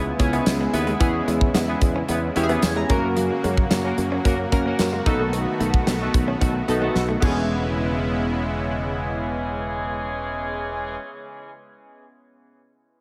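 This nostalgic, glossy 1980s-style pop excerpt in E major at 111 BPM opens with chorused synth keys in pulse-wave and sawtooth tones with a filter sweep, a thick, nasal unison pad, tight horn stabs with light vibrato and analog delay, and a growly, punchy fretless bass, moving through C#m7, E6, F# and B7. A modern acoustic kit sits up front with bright cymbals, a tight kick and tambourine, alongside a very quiet, compressed clean guitar riff. After a synth keys fill and a drum fill, the drums and guitar drop out around 7.5 seconds, and the pad, horns and bass hold until 11.0 seconds before the keys carry on alone through a dreamy, reverb-soaked mix.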